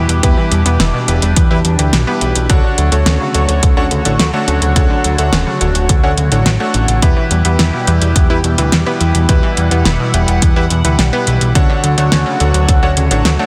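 A swirling, vintage analog pad opens this romantic, dreamy synthwave passage in D major, holding sustained chords through a phaser and chorus while sidechain pumping makes it breathe against the beat. From the first moment it is joined by a round, detuned analog pluck playing arpeggios in the background, its chorus, tape echo and 12-bit sampler grit giving it a gritty edge. A clear, clangy electric grand piano adds stabs with its own tape echo, and a fat, thick sawtooth bass sits up front, its filter sweep and moving notch colouring the low end. A pop drum kit with a fat snare and metallic hats enters at 0.1 seconds, and a punchy, layered electronic kick follows at 0.2 seconds, driving a straight 4/4 pulse at 106 BPM. The harmony moves slowly between Em and Dmaj7 under light reverb and digital ambience, in a dense, heavily limited modern master cut from a longer piece.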